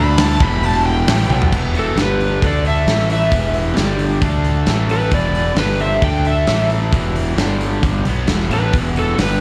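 A brooding, smoky blues rock and southern rock excerpt in E minor at 133 BPM opens with a bright, picked lead guitar solo set in the background over a double-tracked, cranked stack guitar riff, a growly fuzz bass up front and very quiet, gritty tonewheel organ chords through a slow rotary speaker, as a big-room acoustic drum kit with a tight kick joins at 0.2 seconds and plays a fill at 1.3 seconds before a dark, overdriven slide guitar takes the melody at 1.8 seconds over an Em, G5, D5, A5 cycle, all heard as a live club gig through the venue's PA with slapback echo on the guitars and a faint mains hum.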